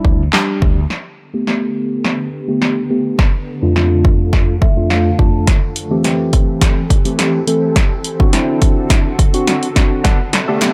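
A punchy analog drum machine drives this bittersweet 105 BPM dance-pop build-up in straight 4/4 over Em7, Gadd9, Dm/F, Am7/E and D7, with a mellow tine electric piano pumping up front through a low-pass filter sweep, a round fretless bass note sounding only until 0.8 s, a cloudy granular pad blooming from 1.6 s, and a picked, clean guitar riff, a background riser and crisp group handclaps arriving in turn during the final moments from 10.0 s.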